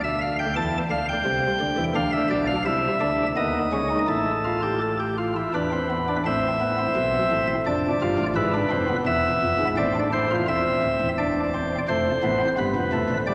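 Moving in a steady three-beat metre at 85 BPM with a straight feel, this short cut from a longer baroque-style fugue in A minor has an elegant, lively character. A solo chamber organ carries all three fugal voices, its flute stops light and sparkling, with a crisp chiff on the attacks and a close, up-front presence, ranging from a deep D1 up to A5. A wet church reverb with a 3.3-second decay surrounds the organ with a long, resonant halo. The harmony starts around D minor and C, gathers toward E before settling on A minor at 6.3 seconds, then opens into brighter C, F and G from 10.5 seconds until the cut ends at 13.3 seconds.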